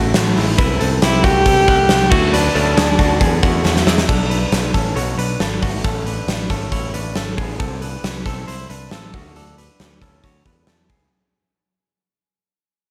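This jangly indie pop excerpt moves at 137 BPM in a straight 4/4, with a youthful, bright mood. A clean, twangy electric guitar, recorded direct and compressed, picks arpeggios throughout, colored by slapback echo and analog delay, while a punchy picked electric bass holds down the low end. A big rock drum kit with a fat snare, punchy kick, hi-hat and crash cymbal sits up front in a stone-room sound, and a drum fill from 3.7 to 4.1 seconds leads into the second section. A single bowed violin with vibrato carries a short, focused, somewhat boxy melody between 1.0 and 3.6 seconds, also treated with slapback echo and analog delay. The harmony moves through chords such as A5, C6, D, E7, Bm7 and Aadd9, and the whole mix has a lush hall reverb and a big arena sound, fading out from 4.1 seconds to the end.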